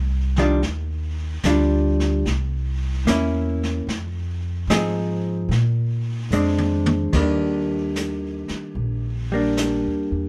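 A slow swung 4/4 at 74 BPM sets this late-night, intimate jazz ballad in Eb major, cut from a longer piece, with woody pizzicato upright bass starting alone before clean, picked hollow-body jazz guitar comps up front and a vintage brush drum kit with dark cymbals and a tight kick joins at 0.4 seconds. The guitar moves through Ebmaj9, C7b9, Fm7 and Bb9 over the bass line, and a brief drum fill from 6.3 to 7.1 seconds leads into a new section landing on Ebmaj7. Light reverb surrounds the small-room brushes, which carry a warm, rolled-off top.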